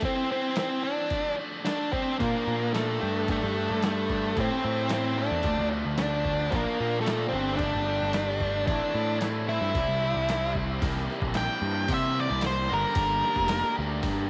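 A dark, fuzzy octave-fuzz lead guitar carries the melody up front in this moody, cool indie rock excerpt at 111 BPM, over a biting overdriven guitar riff in the background and a gritty, compressed sampler-style drum kit with a thumpy kick and medium-tuned snare, before a punchy, bright fuzz bass and a lo-fi raw garage guitar with analog chorus join at 2.2 seconds. The music moves through chords from Cadd9/E and Dm to Bb and Gsus2, reaching C7 at 10.8 seconds and Gm7 at 12.7 seconds, all set in light reverb and digital ambience.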